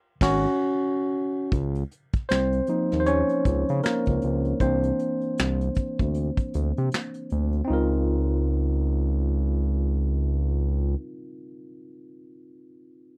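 A brief band accent opens this warm, smooth neo-soul R&B piece at 78 BPM in Db major with a swung 16th feel, where a bright, barky tine electric piano through a combo amp takes a solo over a mellow, wave-folded synth bass with vibrato and a brush kit with dark cymbals, finger snaps and a tight kick, the drums stopping at 7.7 s and the bass at 11.0 s while the piano carries on to 13.2 s, all captured in a dry, close 1970s-style studio sound.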